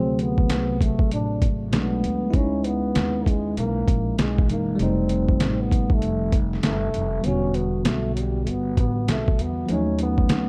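Darkly produced with light reverb, this smooth 98 BPM jazz-hop excerpt with a 16th-note swing sets a distant, veiled bucket-muted trombone melody with vibrato and scooped notes over bell-like tine electric piano chords moving from D7#11 through C#m9, F9 and Em9 to D#m7b5, woody pizzicato upright bass, and an up-front, overdriven lo-fi sampler-style drum kit with a thumpy kick and fat snare that enters at 0.2 seconds and drops its kick from 7.2 to 8.5 seconds.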